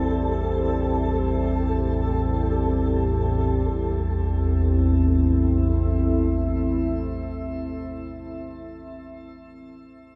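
A deep, rumbling drone low in the register and a moody, mellow pad holding sustained chords open the piece together, over a flickering, grainy texture hovering on a single high note, all in free time in A minor. The dark, desolate dark ambient drone sits in a huge, wet reverb space, with the pad carrying chorus and shimmer reverb, the drone a lush chorus, and the granular texture its own shimmer. The texture drops out at 3.7 seconds, leaving the ominous drone and the pad to sustain until about 8 seconds, in a fragment cut from a longer piece.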